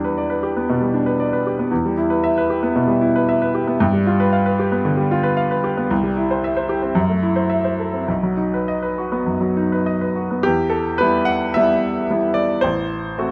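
Classical romantic character piece for solo grand piano, bittersweet and passionate, played with free rubato over a 4/4 pulse in this short passage cut from a longer work. The clear, present piano sits up front, ranging from deep bass into the treble, and a moderate large-studio reverb adds space around it. Its harmonies move from brooding minor chords through seventh chords and a diminished-flavored turn, before a new section begins at 10.4 s and lands on an unresolved diminished sonority.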